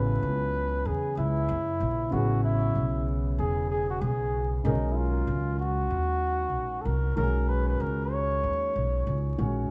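A 4/4 groove with swung sixteenths underpins this short hip hop excerpt, its mood both warm and cool. A mellow flugelhorn carries the melody up front with light vibrato, scooped notes and a punchy jazz-style attack, while a dark, woody upright piano with long sustain supplies smooth vintage chords, both parts trailed by analog delay. A growly pizzicato upright bass sits prominently beneath them, the echo-heavy mix wrapped in vinyl crackle and small-room ambience as the harmony moves from Amaj9 to Bmaj9 at 4.6 seconds.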